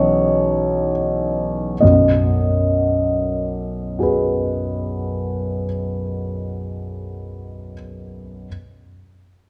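In a flexible, rubato 6/8 that slows through the opening 1.8 seconds, this brief impressionist solo piano excerpt moves from C#m9/B to B6. A grand piano with a polished, present tone and long sustain sits up front, spanning B1 to D#5 and bathed in a wet recital-hall reverb. The recording carries the worn, warbling pitch drift of old cassette tape, giving this fragment of a longer classical piece a luminous, dreamy mood.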